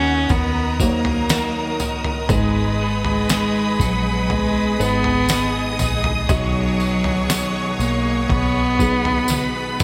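This tender, hopeful pop ballad excerpt moves at a slow 60 BPM in 4/4 over D#m, G#m and B. A dark, boxy solo cello carries the bowed vibrato melody up front, with a lush violin section singing a second line and a string section holding sustained chords with expressive portamento. Underneath, a felt-muted upright piano and a slightly broken-up electric guitar picking arpeggios sit in the background through lush chorus, while a round, foam-muted electric bass anchors the low end. A muffled, pitched-down sampler-style drum kit, with a thumpy kick and fat overdriven snare, enters with a jingly tambourine at 0.3 seconds and closes with a drum fill at 9.3 seconds, all set in a bright 1980s-style digital production with a moderate, lush hall reverb.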